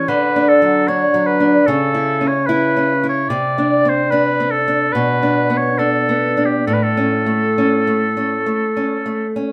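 In a rubato 4/4, this serene, lyrical romantic duo pairs a warm, classical-style oboe, singing the melody with vibrato and a smooth top, with a bright, fingerpicked nylon-string guitar whose fresh strings carry the accompaniment through D6, C#m7, Amadd11/C, Bm7 and A. Both instruments sit up front and play together from the start to about 9.5 s, in this fragment cut from a longer piece. A wet small-room reverb lends the intimate sound a gentle glow.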